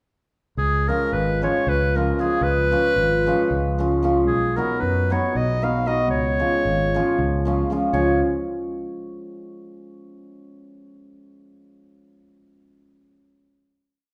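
Wild and festive, this short, complete piece in the Balkan wedding band style races along at 228 BPM counted in eighths, in a straight 7/8 metre and D-flat mixolydian, tuned slightly low to A4 = 439 Hz. A clear, classically styled clarinet leads up front as the solo voice, spinning a motif-based melody built in sentence-like phrases. The cimbalom comes in at 0.9 seconds, its hammered, shimmering triads ringing on the off-beats. Beneath them, a fingered electric bass with a direct, amped, warm tone marks roots and fifths on the main beats. The harmony moves from D-flat to C-flat and back to D-flat before the band settles on a final chord at 7.9 seconds. The three players sound as if gathered live in one large studio, wrapped in a wet reverb that lets that closing chord hang in the air.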